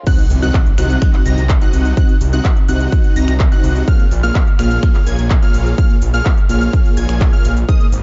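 Festival progressive house in an anthemic, euphoric mood, this excerpt drops straight in at 0.1 s with a very quiet electronic impact under an up-front, punchy overdriven kick and a crisp, overdriven big-room kit of crash, snaps, handclaps, hi-hat and shaker. A huge, thick supersaw riff and a bright, catchy plucky lead playing arpeggios both pump with the sidechain and carry digital delay, the lead also washed in analog chorus, while a lush, saturated detuned saw bass enters at 0.3 s as the harmony moves from Cdim to Bbm7. The mix is dark and dry, with its top end filtered away.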